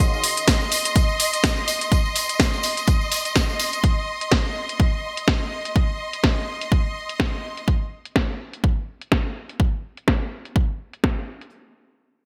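Piano house at 125 BPM with a 16th-note swing, this uplifting, joyful excerpt opens on bright, lush bowed strings holding sidechain-pumped chords on Cm/Eb until 7.7 s, over a punchy, tape-warm electronic kick and an up-front house kit whose cracking snare and hi-hats sit under low-pass filtering and a filter sweep, while a compressed, saturated tambourine with maracas and group handclaps sits in the background until 3.8 s, all set in a lush hall reverb with a bright 1980s-style digital sheen.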